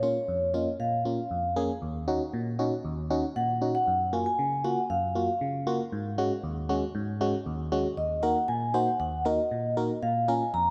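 A mellow vibraphone played with soft mallets carries the melody, its metallic, ringing tone shimmering with motor vibrato and trailed by tape echo. Beneath it, a glassy FM electric piano with a bell-like, fast attack that then decays and a noise layer plays chords through chorus, moving from Bbm through Ebm7, Gbmaj7 and Ab7sus4 before shifting to Ebm at 8.0 seconds. This melancholic yet driving pop fragment, cut from a longer piece, keeps both instruments up front inside a lush hall reverb.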